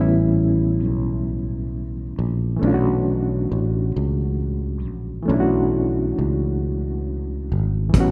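Sultry and yearning, this slow R&B excerpt moves in a six-eight lilt at 45 BPM in B minor, cut from a longer piece. A reedy, clean electric piano carries the accompaniment from the start, its bright tone shimmering under a fast tremolo as it moves from an A13 chord to Bm11 at 2.6 seconds. Beneath it, a sustaining fretless electric bass sits up front with a growly, direct character, holding the low register throughout. Only at 7.9 seconds does a soul drum kit appear, a brief touch of hi-hat and punchy kick with a rolled-off top and a small-room feel. The whole is set in a church or concert hall, where a moderate cathedral reverb lets the sound hang and bloom around the players.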